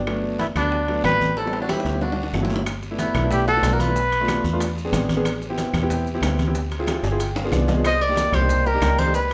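A straight, danceable 4/4 groove at 185 BPM drives this sunny Afro-Cuban jazz excerpt in G major, where a breathy, dark trumpet with light vibrato and scooped notes carries the melody up front alongside a twangy fingerpicked banjo second line in the background. The banjo drops out at 4.6 seconds and the trumpet at 4.8 seconds, and both return at 7.9 seconds. Beneath them sit a foam-muted fingered electric bass, a clear concert grand piano that adds a fill at 6.9 seconds, and background congas, bongos, ringing timbales, woody claves, a raspy guiro and grainy maracas that join at 2.7 seconds, all set in a moderate large studio reverb.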